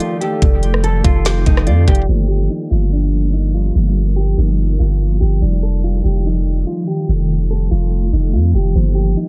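The sound is soaked in digital ambience, echo-heavy and darkened by a low-pass filter, giving this short fragment of atmospheric cloud-rap an ethereal, spacious mood with a half-time hip hop feel. A shimmering ambient pad holds sustained chords that alternate between F13 and Gm11, its granular, evolving tone thickened by chorus, phaser, built-in reverb and sidechain pumping. Over it, a mellow, clean electric guitar plays a fingered, compressed melody through dub echo, while a concert harp rings softly in the background with filtered arpeggios until 4.2 s and a very quiet tine electric piano adds texture throughout. Up front, a produced trap kit with a knocking kick, woody snare and crisp hats carries vintage 12-bit sampler grit but drops out at 2.1 s, just as a filter sweep begins. A deep, sine-based 808-style bass enters at 0.4 s and holds long, decaying notes that anchor the haze.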